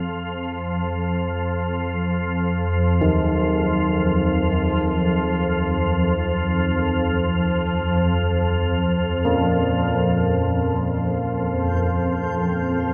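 A detuned, warbling organ-like drone sits up front, fading in over the first 10.0 seconds with a vintage chorused shimmer as it holds an F7sus4 chord before settling on Fsus2, giving this free-time ambient fragment an unsettling, desolate calm. Mellow carillon bells join at 3.0 seconds, their bronze, padded tones ringing in delayed arpeggios. At 11.6 seconds a faint, reversed granular texture swells dreamily in the background, all of it suspended in a vast, wet reverb, the passage cut from a longer piece.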